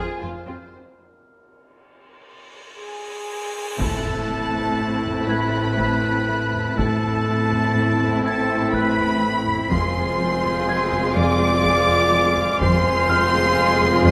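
Heard through a wet scoring-stage reverb and lossy compression artefacts, this cinematic suspense cue moves at a slow 61 BPM in an uneven 3/4, eerie and ominous in A harmonic minor, tuned slightly low. From the first moment, a lush, up-front violin section carries the melody with smooth vibrato. Meanwhile, a distant second violin line, a focused viola accompaniment and two cello sections sit in the background: one plays a focused riff, and the other holds the bass with expressive portamento. A very quiet, boxy concert grand with deep bass and long sustain adds high texture, and a bowed double bass section joins at 0.2 seconds. A break opens early, where a huge, bright cymbal swell builds toward a drum fill, and a clear solo clarinet enters on a second line at 2.8 seconds. At 3.8 seconds the harmony turns from Fm to Am on a huge impact. A mellow, roomy French horn section takes up sustained chords, a small-room taiko ensemble with heavy sticks begins, and a distant high violin texture appears, before the music returns to Fm at 9.7 seconds in this fragment cut from a longer piece.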